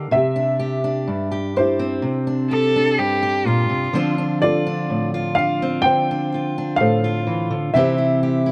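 Hopeful and heartfelt, this short cut from a longer acoustic folk-pop ballad moves at an unhurried pace in four, with a dark, woody upright piano carrying the melody, its slightly detuned, vintage tone and audible action noise lending an intimate feel. A boxy fingerpicked steel-string acoustic guitar sits up front beneath it, while a bowed cello with light vibrato and a nasal edge adds a brief second line from 2.5 to 4.2 seconds. Close, detailed microphones and light reverb frame the harmony as it moves from Cadd9 to Dm7 and settles on C.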